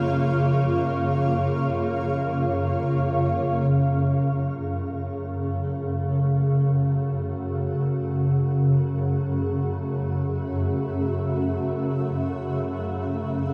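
A swarming, tense drone sits up front from the opening moment, its detuned sine voices placed low in the register beneath a bright granular cloud pad that holds sustained chords higher up. This dark ambient fragment, cut from a longer piece, drifts in free time and feels desolate and unsettling, with the harmony moving from A#m to F#m7 at 3.7 seconds. From that point the pad fades in gradually through to 13.5 seconds, its blurred, cloudy texture of detuned sine and sawtooth tones slowly evolving and carrying both its own reverb and a shimmer reverb. The drone keeps evolving underneath with slow attacks and long releases, bathed in its own built-in reverb. Everything sits in a huge, wet ambient space with a long tail, and the whole is tuned slightly flat to A4 = 437 Hz.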